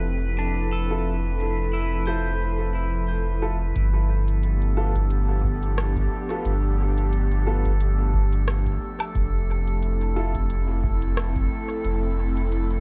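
Ambient dub at 89 BPM in G mixolydian, hazy and peaceful, with a light 16th-note swing in this short cut from a longer piece. A round, sine-like sub bass sits up front under an airy, breathy pad whose chorused, detuned chords move from Fmaj7 to G9 and back to Fmaj7 at 9.2 seconds, while a glassy texture of drifting overtones hovers softly above with chorus and its own reverb. Early on, a clean, compressed pedal steel guitar played with fingerpicks spins slide arpeggios through tape echo and a filter sweep, finishing by 4.0 seconds, and a woody upright piano drops stabs treated with dub echo. At 3.8 seconds the drums arrive: a dry, deep analog kick tucked into the background and a crisp, tape-tinged electronic kit of hi-hat, rim click and woodblock, re-recorded in a small room and trailing dub echo. Digital ambience surrounds the whole mix, giving it a soft, suspended space.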